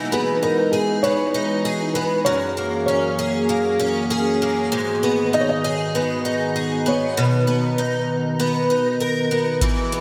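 In this dreamy, ethereal dream pop excerpt, a picked twelve-string acoustic guitar plays bright, shimmering, octave-doubled arpeggios that sit up front with a touch of finger squeak, ensemble chorus and digital delay, over a warbly, nostalgic tape-like pad that holds dark, detuned chords through Emaj9, F#9, G#m7 and Bmaj7. A felt-muted upright piano carries a soft, intimate melody with subtle chorus and delay. A booming analog drum machine with a deep kick and metallic hats enters only at 9.6 s, all set in a lush hall reverb with bright 1980s-style digital production.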